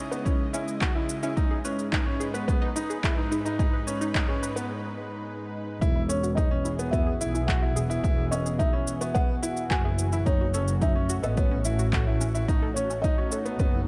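Piano and strings electronica with a hopeful, tender mood, heard as an excerpt cut from a longer piece in a straight 4/4. A bright grand piano with short sustain plays a brilliant, polished riff through tape echo, set over sustained chords from a thick, detuned sawtooth pad that carries chorus and sidechain pumping. Tucked into the background, a round analog pluck with a noise layer and filter sweep traces arpeggios, while a punchy electronic kick sits up front alongside layered electronic shaker and handclaps that sound re-recorded in a small room. After a build-up and a brief break, the drop arrives at 5.8 seconds as a bowed double bass section enters with smooth vibrato and pumping, and at 6.1 seconds a felt-muted upright piano takes the melody, its mellow, boxy tone intimate with audible action noise and tape echo. Light reverb frames the whole, and the harmony moves from C#madd9 and G#m toward Eadd9 and F#m.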